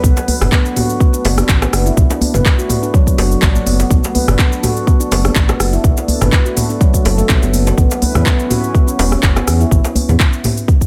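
A punchy, up-front electronic kick drives this warm, driving afro house groove at 124 BPM in B minor, with an afro-pop kit of handclaps, smooth hats, rim click, shaker and toms, soft-handed djembe from 0.2 seconds, a smooth gliding synth bass with portamento, ringing stainless-steel handpan arpeggios carrying 12-bit sampler grit, sidechain pumping and tape echo, and a very quiet, moody detuned analog pad sustaining Bm7 before shifting to Aadd9 at 7.8 seconds in this echo-heavy cut from a longer piece.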